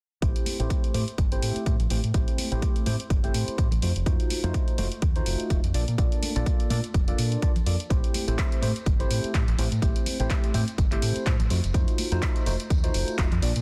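This filtered disco house excerpt has a funky, groovy feel, with a gently swung sixteenth-note pulse and a filter sweep running through its entire length. An overdriven electronic kick sits up front, layered and punchy, with the sound of a large room around it. A punchy analog drum machine adds handclaps and hi-hats from a small room, and the hats carry a sidechain pump. Tambourine and congas, struck with hard hands, sound close and dry in the background, pumping and filtered. A round, dark fingered electric bass plays deep and low, direct and amped, while a clean tine electric piano heard through a combo amp carries phaser, 12-bit sampler grit, sidechain pumping and a low-pass filter over chords moving from Am7 to F7b9 and Bbmaj7. Digital ambience frames a dense, heavily limited modern master.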